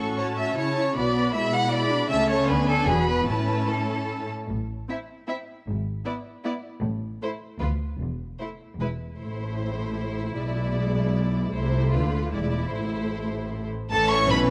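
Spirited and lively, this quick classical-period movement for string orchestra moves at 153 BPM in 3/4, opening in A major before turning to A minor at 4.5 s, with the chordal harmony suspended around 6.8 s before the minor-key progression resumes and a return to A at 13.9 s. The first violins carry the melody with a rich, expressive vibrato, while the second violins play a bright, focused second line that sits up front in the mix. Beneath them, the violas supply smooth, even, lush accompaniment. The cellos and double basses share the bass with soft attacks and expressive vibrato, the cellos adding touches of portamento. All five sections play from the start to about 14.5 s, set in a concert hall with moderate reverb and captured by close, detailed microphones, in this passage cut from a longer piece.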